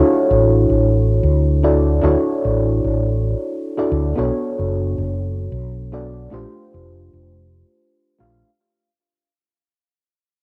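A lightly swung sixteenth-note feel in 4/4 carries this sunny, warm sunset chillout fragment, where a soft, warbling, vintage FM electric piano with chorus, cassette-tape wear, analog delay and a faint noise layer lays down round, fast-attack, decaying chords over Dmaj9, Bm9 and Bbmaj13, while a dark, amped fretless electric bass enters at 0.3 seconds, both parts sitting up front in a small, homely room captured on cassette as the passage fades out across its 8.5 seconds.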